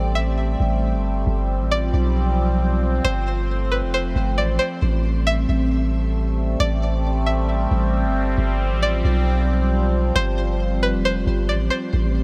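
This melancholic, ethereal piece of atmospheric cloud-rap opens with three parts at once: a deep, sine-toned 808-style bass that hits fast and decays long and mellow at the front of the mix, a sweeping resonant pad holding sustained chords, and a string-like resonator pluck carrying the melody. The pad is the most evolving layer, blending sawtooth, triangle and wave-folded tones with a slow attack, a filter swell and a long release, and its bright character is colored by chorus and phaser. The twangy pluck mixes a sawtooth with a noise layer and a filter sweep, striking quickly and then decaying, with chorus and digital delay giving its sparkle a trailing echo. Over a half-time hip hop feel, the harmony moves between Am7 and G7sus4, and a new section begins at 4.8 s with the same two chords stretched over longer spans. Light reverb surrounds the parts, and the pluck drops out at 11.9 s as the bass and pad ring on briefly in this cut from a longer piece.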